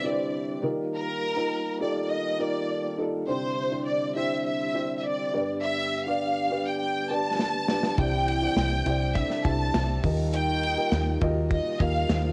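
Cassette-tape home recording in a booth gives this hopeful, anthemic piano-driven pop a homespun haze, as a lush, vibrato-rich violin section carries the melody over a dark, woody upright piano with long plate-reverb sustain and a mellow tonewheel organ, lightly overdriven through a fast rotary speaker, holding chords; a tight, rolled-off drum kit enters with a fill at 7.4 seconds, and at 8.0 seconds a round, foam-muted picked electric bass sits up front while a soft-attack French horn section adds a second line in the background.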